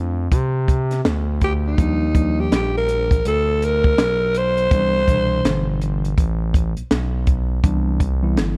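Jazz-hop at 82 BPM in 4/4, with a swung sixteenth-note feel and a cool, relaxed mood, this short excerpt is cut from a longer piece in C major. A mellow tine electric piano plays clean accompaniment through its built-in speakers, moving through a rootless Bbmaj9, then Ebmaj9 at 1.8 seconds and Cmaj9 at 4.7 seconds. Beneath it, a smooth, gliding synth bass blends sawtooth and triangle tones with wave-folded saturation, vibrato and portamento, sitting up front with a fast attack and sustained notes. A compact acoustic cocktail kit enters at 0.3 seconds with hi-hat, a punchy kick and a high-tuned snare, its dark, small-room sound also placed up front. From 1.4 to 5.8 seconds, a growling alto saxophone takes a jazz-style solo, breathy and raspy with gritty edges, scooped notes, a soft attack and light vibrato. The production is dark and warm, set in a studio ambience.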